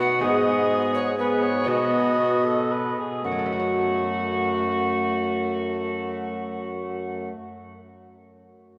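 A courtly yet rustic renaissance-style consort dance in 3/4 and F# dorian opens with the whole ensemble at once: an airy, chiffy alto recorder carries the melody up front over a softly vibrato cor anglais second line, a nasal, gut-strung viola, a dark, smooth-topped bassoon bass and a delicate, very quiet fingerpicked lute. The tempo, between 109 and 129 BPM, slows through the opening 3.2 seconds as the harmony moves from G#m to B before reaching F#m in the second section. A cathedral-like reverb and dark production bathe the consort until the other parts stop at 7.3 seconds, leaving the bright lute ringing alone until 8.1 seconds in this excerpt cut from a longer piece.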